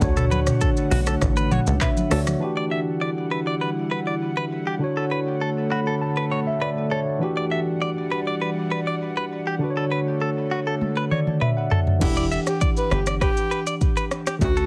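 A hypnotic, sultry afrobeats excerpt at 100 BPM in E dorian opens with a worn, slightly out-of-tune tine electric piano, lightly overdriven and up front, over an airy pad with chorus, a punchy sawtooth analog bass, an electronic afro-pop kit with deep kick and metallic hats, very quiet congas and a bright, twangy direct-recorded guitar riff with tape echo, as the drums and bass drop out at 2.4 seconds, the electric piano fills between the Dmaj7 and Em9 chords, the kit returns with a fill at 10.8 seconds, and a breathy, whispered alto saxophone melody with tape echo enters at 12.0 seconds over a heavily compressed radio sound.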